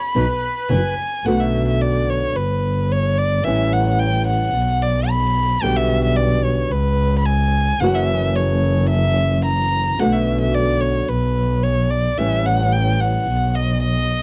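Elegant and playful, this tango excerpt in B minor moves at 110 BPM with a rubato feel, featuring a brief reedy, airy bandoneon phrase from 0.2 to 0.9 seconds, while a nasal, boxy bowed violin plays from the very start and takes a solo from 1.3 seconds onward, full of vibrato and portamento. Underneath, a bright fingerpicked flamenco guitar with audible finger squeak carries the accompaniment, while an up-front bowed double bass adds a focused, smooth-topped low line with vibrato. The sound is dry and close, like a 1970s studio recording, and the harmony passes through chords such as Bm7, G, A7 and F#7.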